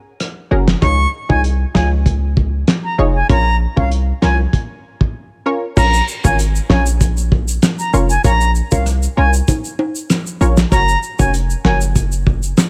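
A cloth-damped, thuddy drum kit with vintage sampler grit opens this bouncy, tough dancehall excerpt in Bb minor at 97 BPM, joined by a hard-hitting 808-style bass, chorused sawtooth chord stabs and a bright, reedy silver flute melody trailing digital delay, with a brief break at 5.2 seconds before tube shaker and timbales enter at 5.8 seconds.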